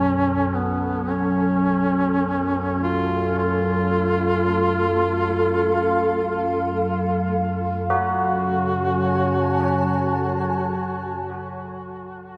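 This unsettling, desolate dark ambient drone drifts in free time. It opens with a close-miked duduk singing a folk-style solo melody up front, with vibrato and scooped notes through tape echo, over a warbling, resonant analog drone thickened by chorus, a blurred, cloudy granular pad holding sustained chords in its own reverb, and distant, clangorous bronze church bells ringing arpeggios through tape echo. The echo-heavy mix is steeped in wet spring reverb; the harmony shifts to a plain minor chord at 7.9 s, and the bells stop at 11.2 s while the pad lingers until 11.8 s.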